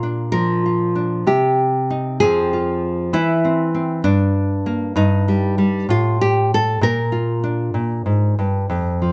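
A lone nylon-string guitar opens the recording, fingerpicked in a classical folk style with a warm, up-front tone. The wistful, haunting mood unfolds in a rubato 6/8 at about 65 BPM, moving through Bb, Cm, Fm, C/E and Gm before a pause in the harmony at 5.0 seconds and a return to Bb at 6.8 seconds. Close, detailed miking captures the playing, set in a moderate large-studio reverb, and this short passage is cut from a longer piece.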